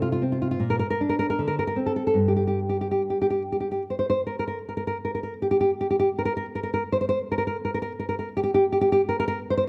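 A dark, thumb-plucked nylon-string guitar sits up front, playing alone in an intimate, passionate romantic fragment for solo classical guitar, moving with rubato in 2/4 at 72-84 BPM through F5, Bb and Bbmaj9/D chords between G2 and C5, before the chords give way at 2.2 seconds and a second section begins at 3.8 seconds, all captured by close, detailed microphones in a moderate recital hall reverb.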